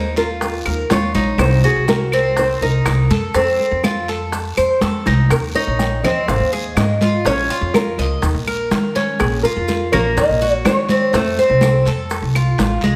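The bright, metallic Cuban tres stands out up front, its picked double strings, some doubled at the octave, rolling out arpeggios from the start in this sultry Cuban son and guajira excerpt at 123 BPM in a straight 4/4. Alongside it, a small, thumb-plucked nylon-string guitar carries the melody with audible finger squeak and a touch of tape echo, while a dark, thumpy upright bass on gut strings sits up front with woody pizzicato. Congas with a thick, damped, high-tuned skin and tight, vintage-sounding bongos are played with soft hands, and woody claves, a raspy guiro and grainy, mellow maracas fill the background. The harmony moves from Ebsus2 through Cdim and F, and after a drum fill from 4.8 to 5.3 seconds a new section passes through Ab, Bbm and Ebm before settling on F. A large, wet studio reverb lends the whole ensemble a spacious, warm glow.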